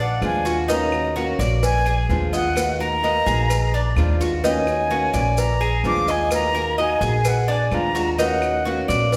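Bathed in the lush reverb of a recital hall, this sultry, danceable Cuban son and guajira excerpt at 128 BPM in Eb harmonic minor sets an airy, vibrato-laden jazz flute melody over metallic, double-strung Cuban tres arpeggios, a thumpy pizzicato upright bass up front, bright fingerpicked flamenco guitar accompaniment, and a percussion bed of tight, high-tuned cowbell in the background, grainy maracas and very quiet woody claves, circling a repeating Bb7 to Ebm7 progression.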